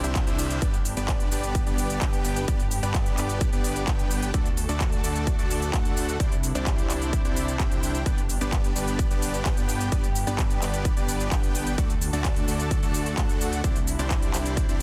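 A huge, detuned supersaw riff with tape echo and sidechain pumping drives this triumphant, anthemic slice of festival progressive house, carried by a punchy, up-front kick, a fat analog bass, a crisp big-room kit of handclaps, hi-hat and shaker, a brief reverse cymbal at 0.2 seconds, and a dark, woody string section bowing sustained chords distantly in the background, all in a dense, heavily limited modern master.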